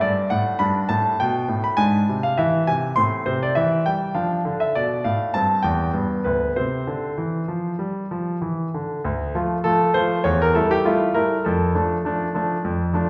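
Graceful and elegant, this short solo piano excerpt cut from a longer classical-period sonatina features a polished concert grand with deep bass and short sustain, played up front in a resonant recital hall, moving through a cadence toward C and then shifting into a minor turn at 9.0 seconds.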